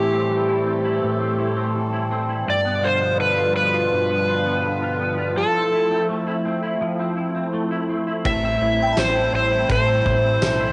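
Floating and ethereal, this dream pop excerpt drifts along in a straight 4/4 over chords moving from Am7 through G7 and Fmaj7 before returning to Am7 at 8.3 seconds. An overdriven slide guitar carries the melody up front, its warm, fingered lines colored by cassette tape and analog delay. Beneath it, a semi-hollow electric guitar plays clean, compressed arpeggios treated with ensemble chorus and delay, while a swirling, detuned analog pad sustains the chords through phaser and chorus. At 8.3 seconds a fat, thick analog bass and a loose indie drum kit enter, the kit bringing a tight kick, a fat snare, ride cymbal and tambourine with a saturated, rolled-off top. A shimmering, warbling FM bell with a long release joins softly in the background at 8.8 seconds, and the whole recording sits in a modest booth ambience with the dulled, homemade character of cassette.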